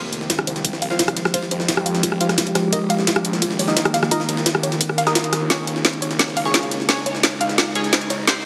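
Cloaked in a lush hall reverb, this aggressive, futuristic dark technical drum and bass excerpt is a build-up where a lo-fi warbling pluck arpeggio and a nasal ring-modulated chord stab (from 0.9 s) ride filter sweeps alongside an eerie metallic FM drone, over a snarling, detuned saw bass, a very quiet riser, an overdriven up-front kit with a woody snare and bright hats, a gritty pitched-up jungle sampler kit, and a knocking electronic kick, with a drum fill from 5.5 s.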